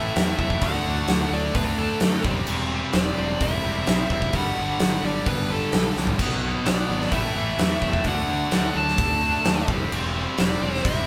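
Hard rock at 129 BPM in a heavy, driving 4/4, this 11-second cut from a longer piece has a dark, smooth overdriven lead guitar carrying the melody over a very quiet octave-fuzz lead guitar on a second line, three bright distorted rhythm guitars (one double-tracked) playing the riff through chords from A5 to D, C/E, G and Bm, a fuzzy fingered electric bass, a barely audible gritty tonewheel organ with slow rotary speaker sustaining chords, and a huge, punchy arena drum kit up front that enters at 0.2 seconds and throws a fill at 6.0 seconds, all captured as a band playing live in one room with moderate reverb.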